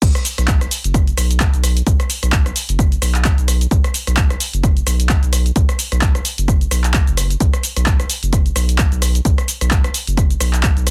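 Acid house at 130 BPM with a 16th-note swing, this hypnotic, raw drop pairs a deep, saturated triangle sub bass, pumping from the sidechain between F#1 and B1, with an up-front, punchy electronic kick and a tape-warm analog drum machine of crash cymbal, handclaps, hi-hat, rim click and shaker re-recorded in a small room, all dry and densely limited in a cut from a longer piece.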